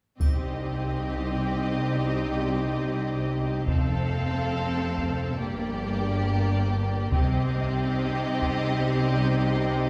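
Relentless and heroic, this cinematic orchestral film-score passage, cut from a longer piece, moves in a straight 6/8 and builds steadily throughout. A warm violin section carries the melody with vibrato, soft attacks and expressive portamento, while a second, clear and focused violin section holds a lower line beneath it. Intense, lush violas fill out the accompaniment, mellow French horns sustain loose chords in a classical style, and a cello section with light vibrato sits in the background above a rich, smooth and even double bass section anchoring the low end. Close, hard-stick taiko drums drive the passage until 8.7 seconds, and a dark-toned triangle rings faintly only at the very start, ending by 1.3 seconds. The harmony moves from Cm through F and Gm back to Cm, all bathed in the generous, wet reverb of a concert hall or church.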